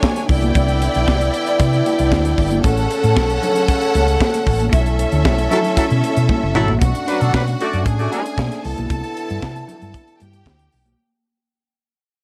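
A straight, danceable disco groove comes from a tight funk drum kit, dry and acoustic, with a high-tuned snare, a tight kick, hi-hat and toms. Distant congas ring softly in the background of a large room. A dark, round, punchy hollow-body bass sits up front and anchors chords that move from Cmaj9 through A and Bm11 to Bm9. Above it, a lush, focused studio string section carries a bowed second line with vibrato, while a distant, roomy French horn section holds dark sustained chords in a classical style. The band hits an accent from 4.7 seconds, capped by a drum fill at 6.3 seconds, and a present, pop-style horn section punches in with warm stabs from 5.5 seconds. The whole glamorous passage sits in studio reverb and fades out from 6.8 seconds, having been cut from a longer piece.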